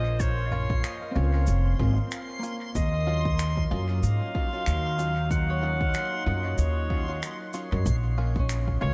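A dry, echo-heavy mix frames this meditative, hazy stretch of ambient dub, cut from a longer piece, where a woody, growly pizzicato upright bass sits up front beneath an overdriven electronic kick and a distant, roomy soft-mallet kit of cabasa, finger snaps and toms sent through dub echo. A bright, soft-attack clarinet carries the solo melody through analog delay over a deep, moody detuned pad with chorus, while compressed, twangy clean guitar stabs pass through dub echo and a mellow Celtic harp enters at 1.1 seconds with ringing, fingerpicked arpeggios. A reversed, dreamy granular texture hovers high above as the chords move from Bbm to Ebm7 and back.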